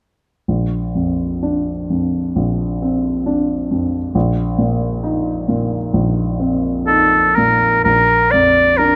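A dark, mellow baby grand piano opens this dreamy, luminous impressionist duo at 0.5 seconds, playing a rubato accompaniment over Bbadd9 and Cm7/Bb harmonies in a moderate recital hall reverb. The oboe enters at 6.9 seconds, up front and smooth-topped in a classical solo style, singing the melody as the harmony settles onto Bb at 7.9 seconds. Close, detailed microphones capture both instruments in this short passage taken from a longer piece.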